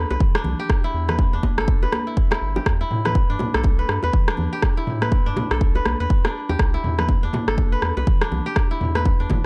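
A ringing, fingerpicked kora opens this driving, earthy afro house fragment, its crisp arpeggios pumping against a sidechain and trailing tape echo, while a deep, round analog bass with a fast attack and dark, sustained tone enters alongside it. Within a fraction of a second the percussion fills in: soft-handed, low-tuned bongos close by, high-tuned congas with a thin, bright skin set back in a live room, a punchy electronic kick placed up front, and a layered house kit adding rim clicks and toms, with the kick and kit both given a tape-warm, small-room character. The groove sits in 4/4 with a 60% swing on the sixteenths, giving the percussion a loose, rolling lilt as the bass breathes with the same sidechain pulse as the kora. The harmony moves from a rootless Cmaj9 to Em7 at 2.7 seconds and back to the rootless Cmaj9 at 6.6 seconds. Studio reverb frames a dry, gritty hardware sound, and the passage is a slice cut from a longer piece, with all parts running together until about 9.5 seconds.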